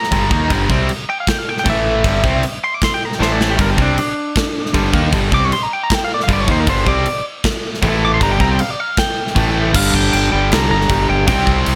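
A dark, slightly broken-up lead guitar carries this heavy, menacing hard rock excerpt, its compressed, picked solo running from the start until 9.7 seconds and ranging up high above the band. Beneath it, a bright, double-tracked overdriven electric guitar drives the picked riff, joined in the background by a warm hollow-body semi-hollow guitar playing a low riff alongside it. A punchy, direct fingered bass with a modern, bright tone anchors the low end. The gated 80s drum kit sits up front with a punchy kick, a medium-tuned snare and bright cymbals in a stony gated room, breaking into a short fill between 3.2 and 3.6 seconds. The harmony circles between G minor and power chords on A and G, and after the solo ends the music moves into a new section that returns to G minor. The mix stays dry and close, with little reverb.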